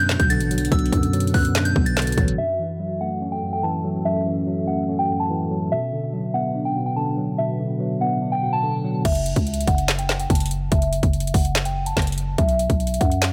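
A dry, filtered mix opens this menacing, melancholic half-time trap excerpt at 144 BPM in F# phrygian, where a soft, pure synth bell melody with chorus, phaser and delay floats over a worn, slightly out-of-tune tine electric piano and a glassy, ethereal FM pad in the background, while a growling, buzzy 808 bass and an up-front trap kit with hard-clipped kick, woody snare and metallic hats drop out at 2.4 seconds during a filter sweep and return at 9.1 seconds.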